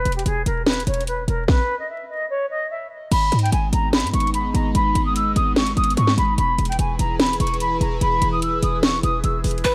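A silver concert flute and a short 808-style bass open this eerie, dark trap excerpt at 0.0 seconds. The drum kit follows almost at once over a bed of vinyl crackle. The flute carries the melody with a pure, straight tone and crisp attack, softened by a low-pass filter and trailed by tape echo, so it feels both up front and distant. Beneath it, the punchy, tight bass and the electronic kit drive a half-time 147 BPM groove in 4/4. The kit has a hard-clipped kick, sharp snare, metallic hats and crash. At 3.6 seconds an airy, breathy pad eases in with slow-attack sustained chords, its detuned, chorused texture shading the shift from G#m to E. In the final moment, at 9.6 seconds, a bamboo pan flute sounds briefly, with chiff, vibrato and lifted highs.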